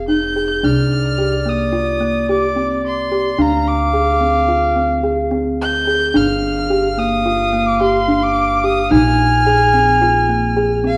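Through a worn, warbling cassette haze in a wet recital hall, this pensive, restless contemporary chamber piece in 5/4 sets a clear, close violin singing a smooth vibrato melody high above a classical clarinet second line, with up-front, woody kalimba arpeggios entering at 0.1 seconds over the thumpy gut-string pizzicato of an upright bass as the chords move from Fm7 through Cm11, Dm7b5 and Gm7 to Bb9sus4.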